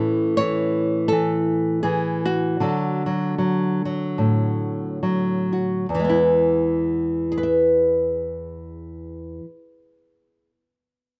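Swung eighth notes in 4/4 drift between 67 and 84 BPM, easing to a slower pace over the first 5.9 seconds of this brief folk cut in E mixolydian. A lone fingerpicked nylon-string guitar, small-sounding and up front, spans E2 to E5 as it moves from A to D and then lands on E at 5.9 seconds, playing on until 10.6 seconds. Close, detailed miking and light reverb give the nostalgic, hopeful mood an intimate clarity.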